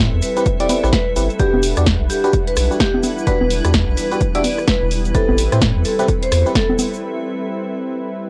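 UK garage in a skippy two-step groove at 128 BPM, this soulful excerpt pairs bell-like FM electric piano stabs and a ringing, close-miked vibraphone melody with tape echo over a smooth, detuned analog pad and a blurred granular cloud pad, both pumping, while a round dub sub bass, punchy analog drum machine congas, hi-hat, rim click and snare, an electronic kick and a grainy egg shaker drive the Am9 to Em7 changes on a gritty cassette recording, before a break at 7.0 seconds leaves the warm analog pad sounding alone until 8.3 seconds.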